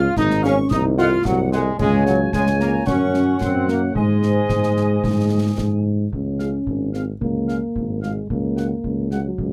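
Closely miked with light reverb, this festive, rousing excerpt of a military-style march for wind band moves in a straight 2/4 at 111 BPM in Db major, anchored by an up-front, warm tuba bass and sustained chords from a trombone section that drops out at 5.8 seconds along with the airy, vibrato-touched flutes in the background. A distant, roomy trumpet section carries the classical-style melody from 0.4 seconds, while a dark French horn section accompanies and a smooth-topped euphonium sings a second line in the background. Close, dry concert snare, bass drum and clash cymbals with dusky cymbal tone drive the march from 0.2 seconds as the music moves into a new section at 6.1 seconds.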